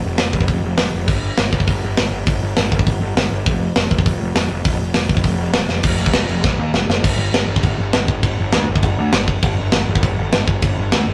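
A rough, dry rehearsal-room recording captures this urgent, aggressive punk rock fragment, charging at 201 BPM in a straight 4/4. A bright, fuzzed-out picked electric bass sits up front with punchy overdrive between F1 and Eb2, while a tight acoustic drum kit with a mid-forward, rolled-off top drives it with kick, medium-tuned snare, hi-hat and crash. The drums mark the changes with a fill at 5.7 seconds and another from 6.4 to 7.0 seconds, pushing into the final stretch.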